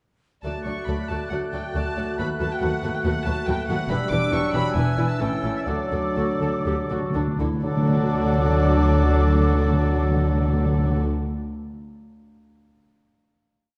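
Moving in a flexible, rubato 4/4, this complete short classical-period movement for symphony orchestra feels graceful and spirited, easing into a slowdown from 3.0 seconds. An intimate, softly bowed chamber violin section carries the melody with light vibrato and a sul tasto touch, while an airy, bright flute section, a smooth-topped oboe, a distant, very quiet clarinet and a second violin section hold sustained chords around it. Underneath, a roomy bassoon, a pure, floating viola section and a mellow French horn section fill in the harmony, the horns sounding chords in the rhythm of the tune. Dark cellos with repeated and sustained bass notes are doubled by a double bass section. Close, dry timpani enter at 5.7 seconds with a fill that leads to a final chord at 7.6 seconds, all set in a wet scoring-stage reverb with a dark production.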